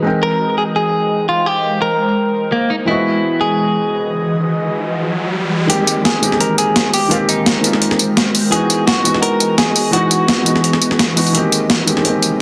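Liquid drum and bass with a warm, lush mood, where a felt-muted upright piano with audible action noise and dub echo sits alongside an ethereal, detuned pad, both moving through filter sweeps under a clean, picked electric guitar melody with spring reverb and delay, until an electronic riser leads at 5.7 seconds into a gritty, overdriven breakbeat kit of hi-hat, snare and tambourine, all set in a concert hall reverb and a dense, heavily limited master.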